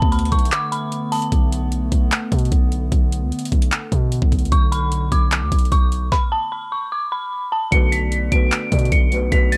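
An eerie, detuned synth bell with an inharmonic, full-bodied FM tone and cassette-tape echo carries the melody of this dark half-time trap excerpt in B minor at 150 BPM, sounding from 0.0 to 1.3 seconds and again from 4.5 seconds over a hollow, flute-like pad, a deep sine 808-style bass, an up-front electronic kit of knocking kick, woody snare, metallic hats and handclaps with cassette grit, and a boxy felt-muted upright piano that enters at 7.7 seconds, all in a dry home-cassette sound with a break and a stop along the way.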